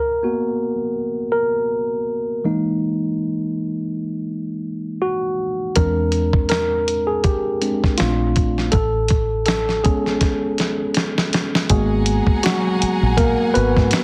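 The groove sits at 81 BPM in 4/4 with a 16th-note swing, giving this smooth, introspective neo-soul and R&B excerpt a relaxed, lilting pulse. A worn, slightly out-of-tune tine electric piano opens alone and carries the lead throughout, clean and up front, moving through lush extended chords such as F#add11/A#, F#13 and E7alt. At 5.8 seconds a dusty, sampler-style drum kit arrives with a thumpy kick, a medium-tuned snare and hi-hat, gritty and re-recorded in a large room, alongside a dark, round, foam-muted fingered electric bass that sounds punchy and low. A drum fill leads into a new section at 11.7 seconds, where a bowed studio string ensemble enters with sustained chords full of vibrato and portamento over a G#m9 harmony. Light reverb surrounds the mix, and heavy multiband compression lends the whole piece a squeezed, radio-like character.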